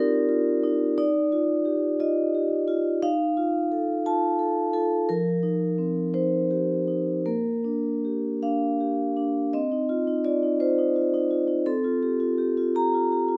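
A solo vibraphone played with medium mallets, its motor off, opens this flowing, playful contemporary classical fragment from a longer piece, ringing metallic tones up front in close, detailed sound with light reverb, as rubato phrasing in 6/8 drifts through extended harmonies from Cm11 and Ebadd9 toward Bb6 before a second section at 9.5 seconds moves to Cmadd11 and Gm9/C, all tuned slightly low to A4 = 437 Hz.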